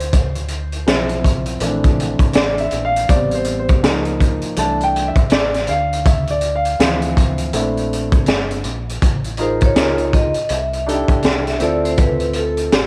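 A cool, nocturnal jazz-hop fragment at 81 BPM opens with a warm, up-front grand piano soloing over Dm9 and Bbmaj9#11 chords, a round, dark fingered electric bass and a gritty, saturated breakbeat kit with a punchy kick, high-tuned snare and cassette-tape crunch, all riding a lazy swung 16th-note feel, until at 9.4 seconds a metallic, ringing vibraphone struck with hard mallets and shimmering with fast motor vibrato takes over the lead in a boxy small-room tone, the whole piece carrying the light reverb and homespun character of a cassette recording.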